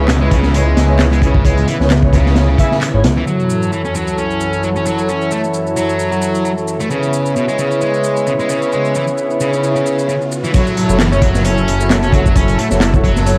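A thick, menacing detuned saw bass drives this raw, energetic breakbeat excerpt at 132 BPM in F# minor, sitting up front with a saturated, beating sawtooth edge alongside a crunchy, gritty acoustic break kit with a tight kick and high-tuned snare. Both drop away at 3.2 seconds, leaving a bright fuzz guitar riff, soft-attack brass stabs with light vibrato and 12-bit sampler grit, and a lush, airy unison pad pumping under sidechain and chorus. Layered, tape-toned handclaps and shaker keep the swung sixteenth-note groove alive throughout, while very quiet sub drops, risers and downlifters move underneath from an impact at 3.3 seconds onward. The opening bars feature filter sweeps on both the distorted guitar and the brass, and the drums come back in for the drop at 10.5 seconds, with the bass rejoining shortly after. Chords shift between C#m7 and F#m7 beneath light studio reverb and a coat of vinyl crackle.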